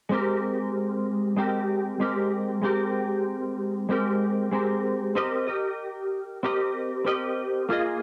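Indie pop in Ab major at 95 BPM, hazy and sunny, this excerpt is cut from a longer piece and features a semi-hollow electric guitar playing fingered accompaniment from 0.1 to 8.0 seconds, moving from Abmaj9 to Cm7 at 5.2 seconds. The guitar's clean, compressed hollow-body tone sits up front, colored by ensemble chorus, a warbly pitch drift and cassette tape character. It is heard through a wet studio reverb on a home cassette recording tuned to A4 = 435 Hz.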